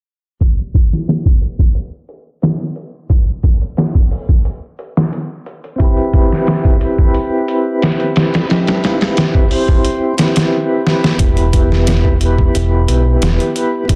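Trip hop at 89 BPM in 4/4 with a straight feel, this melancholic, hypnotic passage in E minor is cut from a longer piece. A sampler-style drum kit opens alone at 0.4 seconds, its pitched-down, gritty hits carrying a thumpy kick, a medium-tuned snare and hi-hat, overdriven and compressed as if re-recorded in a large room, while a filter sweep runs beneath it through 11.2 seconds, with a drum fill arriving at 10.9 seconds. A mellow tonewheel organ enters at 5.8 seconds on a Cmaj7 chord, its round, dark tone showing key click, slow rotary speaker, tremolo, tape echo and vintage 12-bit sampler grit. At 11.2 seconds the harmony moves to Em and a deep dub fingered electric bass arrives, direct and amped, low in the register and sitting up front alongside the drums. Light reverb and digital ambience frame a dense, heavily limited modern master softened by a low-pass filter.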